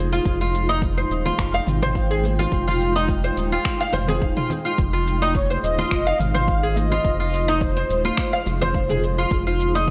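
Swung sixteenths drive this hypnotic organic downtempo excerpt, where an overdriven electronic kick and a deep house kit of finger snaps, shaker and toms are joined by ringing, close congas in the background, a round, dark analog bass pumps up front beside a bright, woody oud playing arpeggios through tape echo, a blurred granular pad holds an Fm7 chord in its own reverb with a sidechain pulse, and from 5.3 to 8.5 seconds a breathy, flute-like synth lead with tremolo and chorus carries the melody.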